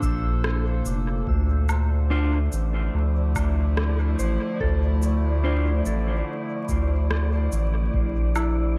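A warbling, detuned pad holds Bbmaj9 and Dm7 chords in D minor over a round, up-front analog bass and a deep kick set in the background, while a soft FM bell arpeggiates through chorus and dub echo and overdriven shaker, rim click and woodblock ring out as if re-recorded in a large room. This meditative, hazy slice of ambient dub moves at 72 BPM in a straight 4/4, with vinyl crackle laid over a dry, close sound. A clean, fingered electric guitar adds dark stabs with subtle chorus and dub echo from 2.1 to 5.7 seconds, and an airy, breathy wind-like noise texture joins at 2.4 seconds.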